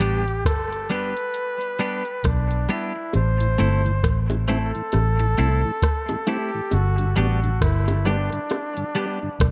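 Opening on a break of clear, vibrato-tinged flugelhorn melody and twangy clean guitar, both trailing dub echo, over a round, foam-muted bass and a soft analog rhythm box with deep kick, metallic hats and rim click, this heavy, meditative dub reggae excerpt at 67 BPM with a swung 16th feel moves from G to Am and back, as tight, saturated bongos with echo join at 3.1 seconds and a mellow tonewheel organ with key click and slow rotary speaker settles into the background at 3.4 seconds, all in a dark production with light reverb.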